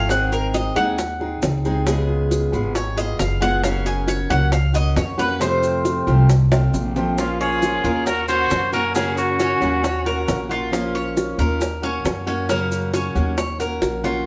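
Danceable and warm, this excerpt of Cuban son and guajira opens with a bright, metallic Cuban tres soloing in arpeggios over picked steel-string acoustic guitar, a woody, thumpy pizzicato upright bass, round low-tuned bongos and grainy maracas, before a punchy, vintage trumpet carries the melody from 7.2 to 10.5 seconds with a bowed violin section singing a second line in the background, all heard as a band playing live in one room with a wet studio reverb.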